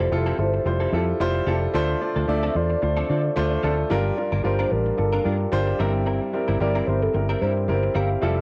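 A lightly swung sixteenth-note groove in 4/4 carries this nostalgic, romantic pop excerpt, where a round, punchy, foam-muted electric bass and a polished, up-front baby grand piano frame a clean, compressed direct electric guitar riff with chorus and delay, while a velvety, mellow synth lead with vibrato, chorus and delay sings the melody in the background over Fmaj9, Dm7, Gm7 and C7/G, all given a cassette-tape softness in a small room.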